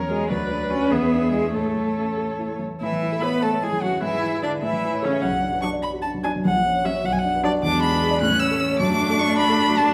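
A focused, vibrato-rich violin carries the melody up front in this spirited, lively excerpt from a quick classical-period piano quartet movement in A major and 6/8 at 100 BPM with a rubato feel, joined by a distant, clear viola, an expressive cello line with portamento entering at 0.1 s, and a dark, mellow concert grand with deep bass and short sustain, all set in a reverberant recital hall as chords such as E7, A and Bm pass through the music.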